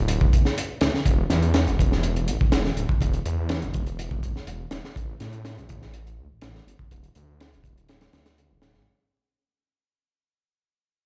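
A gritty, energetic breakbeat clip at 123 BPM in straight 4/4, cut from a longer piece and fading out across its 8.9 seconds. A crunchy, saturated drum kit with a punchy kick, high-tuned snare and hi-hat sits up front with a dark, rolled-off top, while a thick, menacing detuned saw bass spanning D1 to A2 beats against itself under a filter sweep. The mix sounds as if played through a big sound system in a bare room, with large studio reverb and vinyl crackle.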